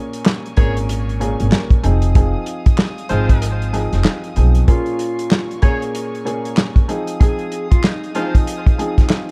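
This boom-bap hip-hop excerpt moves at 95 BPM in 4/4 with a 60% swing on the sixteenths, its F minor mood dark and tough. An up-front soul drum kit with a punchy kick, medium-tuned snare, hi-hat and handclaps carries the groove from 0.1 seconds, its small-room sound smooth, with the kick muted between 3.4 and 4.7 seconds. A woody, pizzicato upright bass sits up front from 0.6 seconds until 4.6 seconds, while an intimate upright piano with audible action noise and short sustain plays accompaniment through a cassette-tape colour, moving between Bbm7 and Fm7. Tight, jazz-style saxophone stabs with vibrato and delay punctuate the groove, and a bowed string section holds soft-attack sul tasto chords, pure and floating, in the background. From 4.7 seconds a clean, fingered electric guitar with lush chorus takes the melody, and the whole production stays dry, dark and warm.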